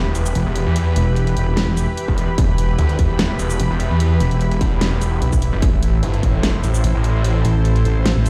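Played through a big sound system in a bare, stone-reverberant room, this heavy, aggressive wobble dubstep fragment rides a swung half-time feel, with a lush, detuned sawtooth pad sustaining chords under sidechain pumping as the harmony moves from Em to Am at 5.6 seconds. Up front, a snarling, growling distorted saw bass with a resonant moving notch holds the low end until 7.4 seconds, joined from 0.4 seconds by a saturated, chorused wobble bass. The produced dubstep kit brings a huge snare, bright hi-hats and shaker, while a layered, tape-warm distorted electronic kick punches in from 2.1 seconds.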